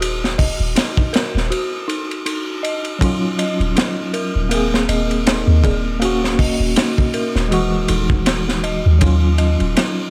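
A swung, crunchy breakbeat with a punchy kick and high-tuned snare drives this melancholic, cinematic trip hop excerpt, as a soft, round 808-style bass sits beneath eerie, detuned FM bell arpeggios given a filter sweep, chorus and tape echo, and after a break from 1.5 s, a clean tine electric piano with tremolo, vintage sampler grit and tape echo joins at 3.0 s in a light studio reverb.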